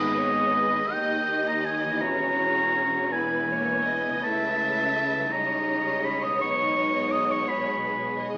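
Elegiac and melancholic, this brief classical fragment, cut from a longer piece, drifts in a rubato 6/8 around 52-59 BPM in G# minor, tuned slightly low at A4 = 439 Hz. An up-front oboe with a vintage, warm tone carries a second line high above the strings, while a violin section plays the melody softly in the background, sul tasto with light vibrato and a gentle attack. A second, richer violin section adds its own expressive line close by, and a smooth, even viola section fills in the accompaniment beneath. The low end comes from a portamento-inflected cello section and a distant double bass section, both sitting back in the mix, while a very quiet, mellow concert harp rings out fingerpicked arpeggios and soft-mallet timpani on calf heads sound a round G#2 only in the first 0.9 seconds. The harmony moves from G#m through D#, E and A/C# to D#7/C# before settling on G#m/B, all bathed in a long scoring-stage reverb and filtered into a thin, AM-radio character.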